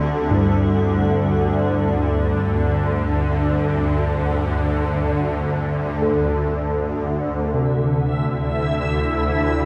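Unfolding in free time, this dark ambient drone excerpt feels unsettling and desolate, built on a swarming, detuned drone held up front from 0.0 s over a D9sus4 chord, while bronze gamelan-type bossed gongs ring out dark, beating arpeggios through a diffuse delay, a very quiet, cloudy granular pad blurs above until 7.5 s, and a reversed, swelling texture rises in at 8.1 s, all soaked in a lush hall reverb.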